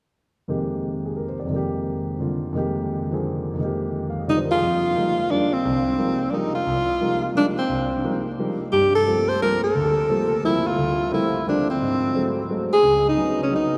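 An intimate grand piano with audible action noise and long sustain opens this fragment of cool, intense jazz at 0.5 s, swinging in 3/4 at 175 BPM in F dorian over Fm11 harmony that moves through Gm11 and Ab7b9 to C#9sus4, before a clear, close-miked alto saxophone enters up front at 4.3 s with a vibrato-laden solo melody, both bathed in the long, wet reverb of a church or concert hall.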